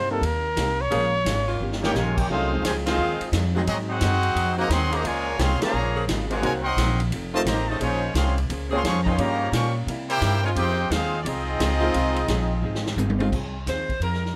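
Swung eighths at 174 BPM in 4/4 drive this sultry big band swing excerpt in F minor, where a mellow solo trumpet with vibrato opens over woody pizzicato upright bass, a natural baby grand piano, a dark, clean hollow-body archtop guitar in the background and a distant, roomy drum kit with a boomy kick, before a brilliant trumpet section takes the melody at 1.8 seconds against a nasal, straight-muted trombone section and edgy, close-miked saxophone chords, with a warm saxophone section carrying the tune from 13.7 seconds in a dry room.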